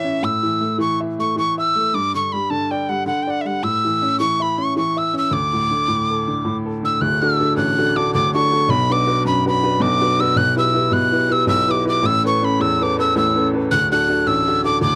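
A dry, close recording in a small room with a 1970s studio flavor opens this bright, cheerful Celtic slip jig in D major, cut from a longer piece and moving at 107 BPM in a straight 9/8. Up front, a breathy metal tin whistle carries the melody from E5 to F#6 with vibrato, a crisp attack, audible chiff and lifted highs, while a clear, woody, somewhat boxy upright piano accompanies from D1 to E5. Both play throughout the 15 seconds, the harmony moving from A5 and G5 chords through A and D before turning to Bm, Em/B and Aadd9 and resolving on D at 13.7 seconds.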